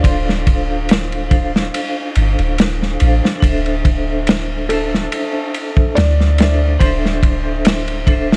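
A brooding, cinematic trip hop groove opens at once with a crunchy, saturated breakbeat kit of punchy kick, medium-tuned snare and dark ride cymbal sitting up front, over a deep, round 808-style bass and a bed of vinyl crackle. A metallic, ringing vibraphone with slow motor vibrato, tremolo and tape echo carries the accompaniment, while a felt-muted upright piano, mellow and intimate with audible action noise, plays a soft melody in the background through its own tape echo. The dry sound moves from Dm7 to Am/D at 3.4 seconds in this short cut from a longer piece.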